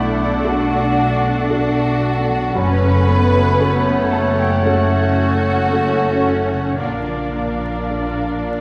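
A muted double bass section, veiled and up front with a soft attack, anchors this slow, rubato film-score cue at 56 BPM, an uplifting and hopeful passage cut from a longer piece. Above it, a con sordino violin section carries the melody from a distance, lush and dark with vibrato. A second muted violin section weaves a secondary line alongside an oboe with a clear, light vibrato, a pure and hollow silver flute with a crisp attack, and a roomy clarinet, these three winds set in the background. A felt-muted upright piano, intimate and very quiet, joins a lightly vibrato viola section in the accompaniment, as a mellow, tight French horn section holds sustained chords and a fingerpicked concert harp rings out arpeggios. A smooth-topped cello section shares the low end with the basses. The harmony moves from Bm7 to F#m at 2.6 seconds and settles on Bb at 6.8 seconds. The full orchestra plays throughout the 8.6 seconds, heard from further back in a wet scoring-stage reverb with vinyl crackle.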